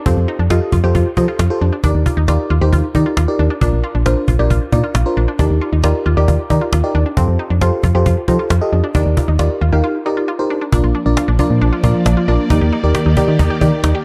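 Wistful yet bright, this synth-pop excerpt moves at 135 BPM in Bb major, with a punchy, round FM bass up front beneath a mellow FM electric piano whose soft, noise-tinged tone is colored by chorus and phaser. A detuned sawtooth pluck spins arpeggios through chorus and analog delay, while a woody, close and dry cajon played with hard hands keeps time, all set in a dark production with light reverb. After a break at 9.8 seconds, a vintage, full-bodied string machine on violas enters at 10.7 seconds with sustained chords treated with phaser and ensemble chorus, over changes cycling through Fadd9, Ebmaj7 and Bb.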